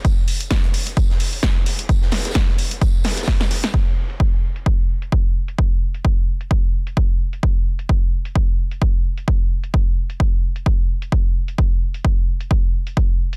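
House drum groove at 130 BPM with a swung 16th feel, bouncy and gritty, built on an up-front, punchy, tape-warm electronic kick under a layered house kit of low-pass-filtered crash, hi-hat and snare, while an oversized low-tuned acoustic kit of fat snare, hi-hat and tambourine, high-pass filtered in a bright stone room, adds a saturated, pumping edge until a drum fill from 3.0 s hands over at 3.7 s, all set in studio reverb with a dense, heavily limited modern master in this excerpt of a longer piece.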